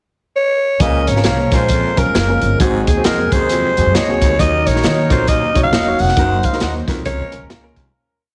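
A breathy alto saxophone opens this uplifting, swung 1960s-style soul piece with a short pickup, and the band joins at 0.8 s beneath its up-front, motif-based melody: a gritty breakbeat kit playing a backbeat groove, a woody pizzicato upright bass line with chromatic approach notes, and short rhythmic chords from a clear, worn grand piano. Further back sit a raspy baritone saxophone with low punctuation, mellow horns holding long notes through tape echo, a very quiet tonewheel organ pad with slow rotary speaker, and, from 1.3 s, a lo-fi electric guitar chopping on the backbeat. The heavily compressed, radio-like sound carries light reverb and fades out from 6.2 s.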